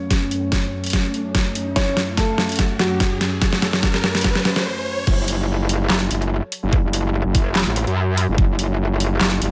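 The metallic, aggressive wobble bass crashes in at 5.1 seconds to drive the drop of this menacing, heavy F# minor dubstep cut at 145 BPM in half-time, after a build-up where a dark, intimate baby grand piano with audible action noise and delay carries the melody over a lush, detuned sawtooth pad with sidechain pumping, a background riser, and an overdriven dubstep kit and knocking electronic kick playing a drum fill before a brief stop at 4.7 seconds.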